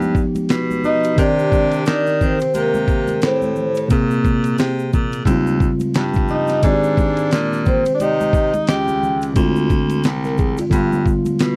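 Up front, a gritty, compressed sampler-style drum kit with a thumpy kick and fat snare, re-recorded in a small room, anchors this smoky, mellow jazz-hop excerpt at 88 BPM in C minor with a swung sixteenth feel, while a vibrato-laden baritone saxophone carries the bass line with a distant, roomy subtone. A worn, slightly out-of-tune tine electric piano comps through chords from G7b13 to Cm7 and Abmaj7, and bright congas and egg shaker played with soft hands sit in the background. From 0.9 to 9.2 seconds, a metallic, ringing vibraphone with soft mallets and slow motor vibrato takes the melody over a breathy tenor saxophone second line with scooped notes, all captured in a dry, close 1970s-style studio sound.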